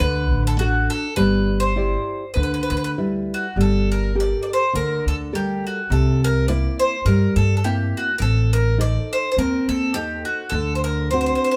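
Captured live in a stone room with a moderate reverb, this passionate, romantic excerpt from an Italian folk serenade swings loosely with a rubato feel: the bright, double-strung picking of a bowl-back mandolin carries the melody up front, a dark classical nylon-string guitar fingerpicks the accompaniment with audible finger squeak, and a woody, growly pizzicato upright bass sits forward beneath them, with a second section beginning at 3.6 s.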